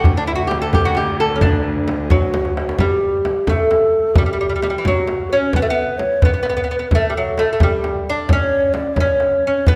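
A bright, delicate fingerpicked lute with doubled nylon strings sits up front in this stately, festive Persian modal ensemble piece in 6/8, over a soft-handed tombak in the background and a deep, dry frame drum struck with hard hands, while a distant bowed cello holds a smooth drone until 2.8 s, an airy, hollow low ney with vibrato adds a tongued second line from 2.1 s, and a drum fill at 2.3 s leads into the next section, the whole heard in a wet recital-hall reverb as a passage cut from a longer piece.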